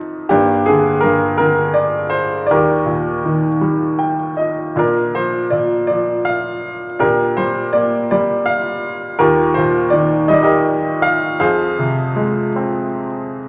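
A clear, natural baby grand piano sits up front in a wet recital hall reverb, with vinyl crackle in the recording, in this short excerpt cut from a longer classical piece. The solo piano plays a lyrical, reflective and melancholic line in 6/8 at 54 BPM with a rubato feel, ranging from Eb2 to G5 and tuned to A4 = 445 Hz. Its harmony moves from Gm through Eb and Bb to Ebadd9 and finally Fm, with a brief fill between 3.6 and 4.8 seconds.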